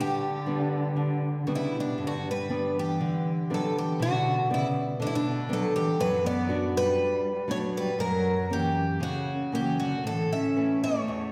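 Set on a wet scoring stage and heard from further back in the room, this 11.3-second excerpt of a tender, nostalgic fado-style ballad drifts at a rubato 60 BPM in 2/4, moving from G through Bm/F# and F# to A. A picked twelve-string acoustic guitar carries the melody up front with a shimmering, octave-doubled tone and audible finger squeak, while a single dark, woody cello bows a second line with vibrato and portamento. A bright, fingerpicked nylon-string guitar with fresh strings supplies the accompaniment, also close up.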